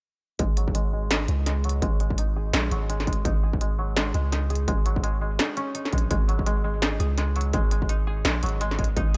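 At 0.4 seconds the whole arrangement enters at once: a mellow, woody koto picking out arpeggios between F#3 and G#4 over a G#5 chord, a deep 808-style bass, a distorted electronic kick and an industrial drum kit. This short cut from a longer half-time drum and bass track runs at 168 BPM in 4/4, with a 58% swing on the sixteenths and a tense, spacious mood. The fingerpicked koto carries vintage 12-bit sampler grit, a low-pass filter sweep and dub echo, and it sits further back than the rhythm section. The sine-toned bass holds long notes between G#1 and C#2, with a fast attack and a decaying tail, placed up front. The kick and the kit, with its clanging snare and crisp hats, are re-recorded in a small room and pushed forward, all within a digital ambience, until the kick stops at 9.0 seconds and the other parts at 9.2.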